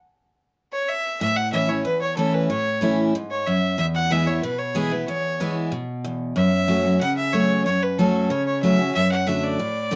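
This bluegrass fragment, taken from a longer piece, moves at a brisk 186 BPM in a straight 4/4 in A major, with a virtuosic, rustic spirit. A single fiddle carries the melody from 0.7 seconds, played bowed with a biting, earthy, somewhat boxy tone, an airy bow sound and light vibrato. From 1.2 seconds a picked steel-string dreadnought guitar supplies bright, full-bodied accompaniment, sitting slightly louder than the fiddle. Both instruments are placed up front. The harmony steps through A, E, F#m and D/F#, and the whole is framed by a dark, warm production with a moderate studio reverb.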